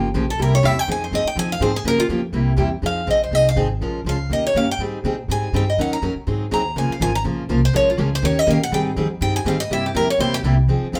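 Swung eighths at a brisk 245 BPM in 4/4 drive this virtuosic, bittersweet F minor jazz manouche excerpt, where a picked steel-string acoustic guitar solos from 0.3 seconds over a picked accompaniment guitar, a second accompaniment guitar that drops out between 2.7 and 6.8 seconds, and a woody, thumpy pizzicato gut-string upright bass up front; the guitars range from bright and boxy to dark and full-bodied with audible finger squeak, all wrapped in a short wet studio reverb.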